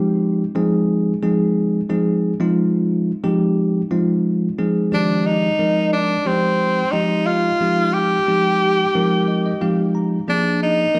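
A straight 4/4 pulse at 90 BPM carries this nocturnal, slick jazz excerpt in F dorian, with a bell-like tine electric piano up front playing the accompaniment on Fm9 from the start. At 4.9 seconds an edgy tenor saxophone takes the melody as a forceful, punchy solo with vibrato and slapback echo, and the piano adds a fill at 8.9 seconds before the harmony moves to Bb9. The live club sound, heard through the venue's PA, adds light reverb.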